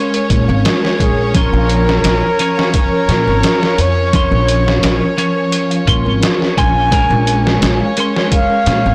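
Trip hop excerpt in Bb minor at 86 BPM, cinematic and brooding, resting on a Bbm7 chord as a muffled, pitched-down sampler drum kit with a thumpy kick and overdriven grit sits up front beside a woody, gut-strung pizzicato upright bass, while a clean, compressed twelve-string electric guitar shimmers with harmonic tremolo and tape echo, a distant chamber violin section holds earthy bowed chords, a tinkling music box arpeggiates softly in the background through digital delay, and from 1.0 seconds a breathy, veiled bucket-muted trumpet carries an intimate melody, all captured in a small room with a blown-out, overdriven sound.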